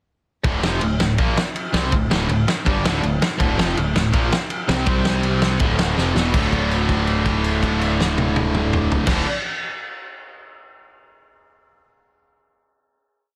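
Dense and heavily limited with a touch of light reverb, this short, angry punk rock piece in D minor charges along at 163 BPM in a straight 4/4. A loose indie drum kit sits up front with a fat snare, punchy kick and rolled-off top, driving a two-step groove. Behind it, a distorted electric guitar and two tight, picked guitars, one double-tracked, grind out a bright power-chord riff, while a growling, overdriven picked bass doubles that riff in driving eighth notes; a drum fill at 6.0 seconds leads into a D5 chord held from 6.3 seconds to the end.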